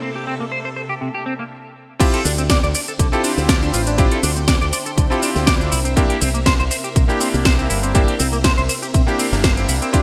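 This short nu-disco excerpt has a bright 1980s-style digital sheen, with light reverb and a sleek, sensual mood at 121 BPM in 4/4, with a gentle swing on the sixteenths. From the start a bright electric grand piano with a clangy, cutting edge plays accompaniment through sidechain pumping and delay, while a clean electric guitar picks a riff through analog chorus and delay, and a lush sawtooth string machine holds soft-attack chords in the background, colored by phaser, ensemble chorus and pumping. After a brief stop at 1.5 seconds, the drop arrives at 2.0 seconds, bringing in a punchy, tape-warm electronic kick up front and a house kit with a cracking snare, metallic hi-hats, shaker and crash cymbal, treated with gated reverb. A round, fingered electric bass with an envelope filter joins at 2.3 seconds and drops out at 9.8 seconds. The harmony moves from C7 to Dm11 and back to C7.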